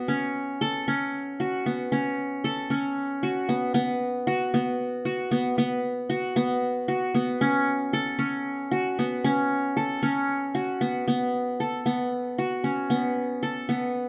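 Pensive and hypnotic, this contemporary instrumental fragment, cut from a longer piece, moves in an asymmetric 7/8 at 230 BPM counted in eighths with a straight feel. A solo acoustic qanun carries everything, its triple strings plucked with fingerpicks for a bright, bright-edged tone that sits up front. Its line stays between B3 and A4, opening over an A/B harmony before shifting to a B5 sonority at 3.7 seconds. A new section arrives at 11.1 seconds and runs to the close at 14.1 seconds. The recording has a wet studio reverb and a sense of being heard from further back in the room, lending the plucked notes an airy halo.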